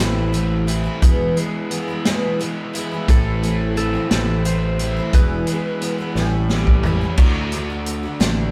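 Reflective and dusty, this folk rock and heartland rock passage moves in a slow 6/8 at 58 BPM in A harmonic minor: a shimmering, octave-doubled twelve-string acoustic guitar and a dark, overdriven, double-tracked garage guitar riff ride over a growly, bright fingered bass and an up-front vintage kit with a punchy kick, high-tuned snare and dark cymbals that plays a fill at 6.2 s, while a clean, compressed lap steel adds slide and volume swells from 3.1 to 6.8 s, the band sounding live together in a stone room.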